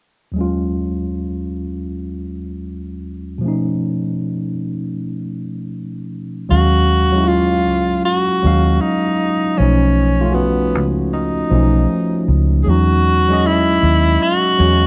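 A small-room ambience frames this sultry, late-night R&B excerpt in Eb minor at 78 BPM with a swung sixteenth feel: a worn, slightly out-of-tune tine electric piano plays alone over Ebm9 and B7 until 6.5 s, when a round, foam-muted vintage fingered electric bass and an up-front, jazz-style tenor saxophone solo with light vibrato, scooped notes and a smooth top join as the harmony cycles back through Ebm9 and B7 before moving on to Emaj9.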